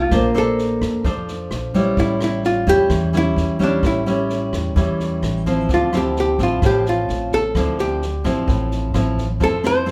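A moderate large-studio reverb gives this short bossa nova excerpt an airy, open space, with two guitars placed up front. At 129 BPM in a straight 4/4, the mood is breezy and romantic. A dark, clean, compressed hollow-body archtop guitar, miked and amplified, carries the picked melody between D4 and C5. Beside it, a full-bodied, fingerpicked nylon-string guitar with a deep classical tone and audible finger squeak plays the accompaniment from A2 to C5. An upright bass, woody, growly and thumpy, plays pizzicato on steel strings, and an open jazz drum kit enters at 0.1 seconds with a boomy kick, rim clicks and a medium-tuned snare, sounding natural in a small room. The harmony moves through Bbmaj9, A7 and Dm9 before settling on Fmaj7 near 9.4 seconds.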